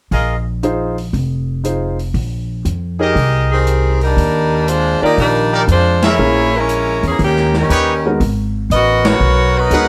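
A swung 4/4 groove from a roomy, distant big-band drum kit with a punchy kick and a woody, thumpy pizzicato upright bass drives this energetic, brassy big band swing, as a brilliant trumpet section with light vibrato plays stabs and a warm baby grand piano accompanies, and then an edgy saxophone section with vibrato and plate reverb joins to take the melody up front at 3.5 seconds, with band accents at 5.9 and 9.0 seconds, all heard in a moderate club reverb.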